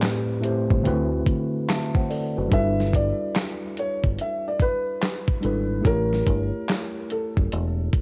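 A dusty, gritty sampler-style kit with a thumpy kick, medium-tuned snare, hi-hat and handclaps sets a swung 72 BPM lo-fi hip hop groove, joined at 0.7 seconds by a deep, round, punchy fingered electric bass. A worn, slightly out-of-tune tine electric piano, present from the very start, carries the dreamy chords from Am9 through D13 and G6 to A7b9, softened by a low-pass filter and cassette tape. From 2.5 seconds, a muted, intimate felt upright piano with boxy tone and audible action noise adds a gentle melody, all set in light reverb and home-cassette haze.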